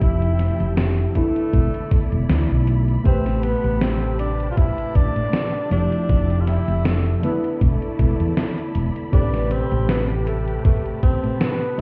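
Vaporwave with a nostalgic, melancholic swing, cut from a longer piece, where a breathy, whispered tenor saxophone sings an intimate jazz-style melody through tape echo over warbling, detuned synth keys bathed in lush chorus, a soft bed of bowed strings roughened by 12-bit sampler grit in the background, a growly, woody fretless bass, a thumpy electronic kick, and a drum machine's hi-hat and gated-reverb snare, all heard as if muffled through a wall, echoing in a stone room, on cassette tape.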